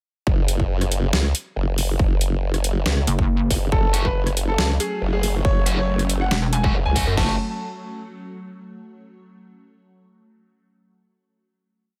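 Heavy and chaotic, this short wobble dubstep piece runs at 139 BPM in a half-time 4/4 feel in F# minor, launching straight into a drop on F# minor that gives way to a final chord at 7.2 seconds. A formant-sweep wobble bass built from detuned sawtooth and sine tones sits up front, saturated and compressed with chorus, its modulated phrases changing wobble speed. A second, pulsing pluck wobble bass breaks in briefly at 3.1 seconds and returns later to answer it. Two layered electronic drum kits carry the half-time beat, both overdriven: one has a punchy kick, deep snare and crash, re-recorded in a small room, and the other adds bright hi-hats, rim clicks and snare. A clear baby grand piano plays a repeating riff melody with long sustain and digital delay, joined by sparse echoing stabs from an overdriven electric guitar moving one chord shape in parallel. Underneath, an evolving wavetable pad morphs through slow-attack held chords with ensemble chorus, phaser, built-in reverb and sidechain pumping, while the overall mix stays dry and close.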